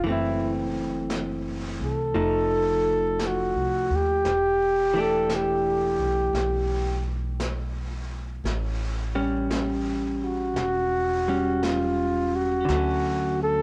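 A breathy flugelhorn carries the melody up front in this melancholic, smoky jazz ballad, its mellow, soft-attacked tone close-miked and marked by scooped notes as it solos across the whole 13.6-second excerpt. Beneath it, a dark, clean vintage hollow-body electric guitar supplies picked, compressed accompaniment with a cassette-tape coloring, moving through F#m7b5, F7, Em7 and A6 before settling on Dmaj7 at 12.7 seconds. An upright bass plays pizzicato low in the mix, its steel strings giving a woody, warm sound. A vintage brush drum kit enters at 0.1 seconds, sitting distant and roomy at the back, with brushes on a medium-tuned snare and hi-hat, a rolled-off top and its own cassette-tape tint. The slow 57 BPM swing in 4/4 unfolds in a small room with light reverb, recorded at home on cassette.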